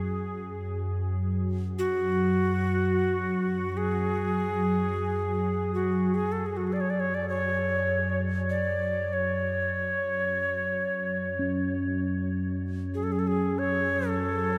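World meditative music in free time, haunting and spacious, where a bright, airy cedar flute with a crisp chiff carries the melody up front through a diffuse delay over a deep, warbling, detuned pad drone soaked in huge reverb, while a very quiet quartz singing bowl rings with slow beating at the start and returns from 11.4 seconds in this fragment cut from a longer piece.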